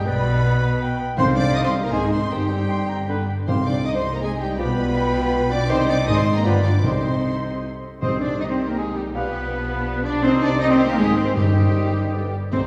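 Heard from further back in a wet scoring-stage reverb, this urgent, restless classical-period movement in triple time with a rubato feel, cut from a longer piece, sets a rich, expressive violin melody over a lush second violin line, airy flutes, a clear, distant oboe, a mellow clarinet, a very quiet dark bassoon and woody violas, with tight horn chords, smooth cellos and a focused, up-front double bass section below, close, dry hard-mallet timpani entering at 1.2 s, and a roomy trumpet adding stabs from 8.0 s.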